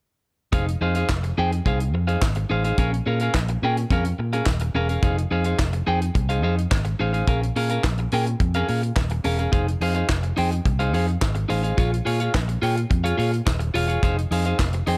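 An electric guitar at the edge of break-up sits up front in this sultry, glamorous disco groove, its picked, compressed tone carrying a slight grit as it plays accompaniment between Db4 and G5. Beneath it, a fingered electric bass, punchy and amped, holds the low end from Eb1 to Bb2 with a warm presence. A tight funk drum kit keeps a straight 4/4 pulse at 107 BPM, with a high-tuned snare, tight kick, hi-hat and handclaps heard naturally in a small room. All three parts play together from 0.5 seconds to 15.0 seconds, and the harmony in F minor moves back and forth between Fm7 and Bbm7. Cut from a longer piece, the recording carries a touch of small-room ambience.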